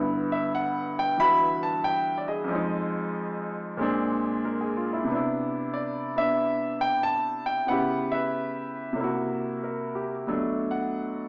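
Solo jazz with a warm, playful mood, carried by a lone upright piano that swings its eighth notes in 4/4 through a short passage cut from a longer piece. The piano sits up front with a clear, woody, polished tone and long sustain, ranging from deep bass notes to bright upper lines as the harmony moves through colorful chords like Fm7, Bb9, Cmaj9 and C7#11 before arriving at Bm7 near 10.3 seconds. A wet, large studio reverb surrounds the playing, yet the overall sound has the compact character of a small speaker.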